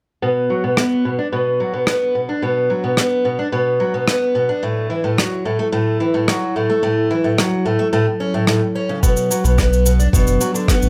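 Over a straight 4/4 pulse, a brushed rim click and cabasa sit up front in a small acoustic room from 0.8 seconds, giving this wistful, intimate folktronica excerpt a light, intimate layer of texture. A fingerpicked twelve-string acoustic guitar carries the harmony in shimmering, octave-doubled arpeggios, its finger squeaks audible and its tone softened by a low-pass filter and trailed by digital delay. Behind it, a warbling, lo-fi pad holds sustained chords in the background, detuned and wave-folded with slow attack and long release, its chorus and built-in reverb lending a nostalgic, tape-worn haze as the chords move from Bm to F#m7 and back. Near the end, a pitched-down, thumpy electronic kick arrives at 9.0 seconds, followed at 9.4 seconds by a round analog bass whose deep, dark tone picks up grit from tube saturation. A moderate studio reverb ties the parts into a cozy, close space.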